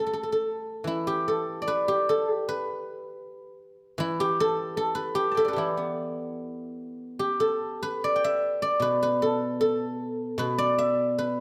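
Contemplative and elegant, this brief passage cut from a longer Chinese traditional piece features a solo guzheng played with fingerpicks. The tempo hovers between 71 and 79 BPM in 2/4, though the rubato feel lets the pulse breathe freely, and the music sits in the E yu mode with tuning at A4 = 443 Hz. The acoustic guzheng sounds ringing and silvery, placed up front, and spans a range from B2 to A5 across its 11.4 seconds. The opening section gives way to a new section at 7.2 seconds. A moderate recital hall reverb, lasting around 1.7 seconds, surrounds the instrument with a graceful sense of space.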